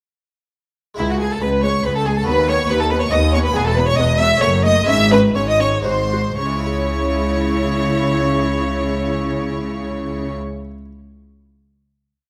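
Driving and stormy, this brief baroque-style concerto movement in triple time opens with a ritornello in which a chamber violin section carries the melody with light vibrato and a soft, sul tasto touch, while a solo violin and a smooth symphonic violin section double the tune at the octave. Beneath them, a lush viola section adds repeated notes and sustained chords with portamento, a distant cello section sets the bass on the beats, an up-front double bass section doubles that line, and an airy, bright harpsichord rolls chords in the background. The pace broadens from 2.9 seconds before everything settles onto a held final chord at 6.4 seconds, heard through close, detailed microphones in a moderate recital-hall reverb.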